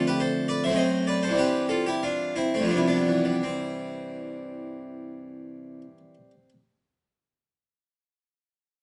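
This baroque-style classical suite movement for solo harpsichord in C major has a serene, dance-like character in 3/4, moving with rubato at 80-104 BPM and slowing down over its first 3.4 seconds as the harmony passes from Dm/F through F#dim7 and C/G to G7 before arriving on C. The Flemish-style instrument, with two sets of plucked strings tuned to A4 = 439 Hz, sounds full and up front across a range from C2 to E5, and it falls silent at 6.5 seconds in this excerpt from a longer piece. A moderate stone-room reverb surrounds it, and the sound holds nothing above 10.8 kHz.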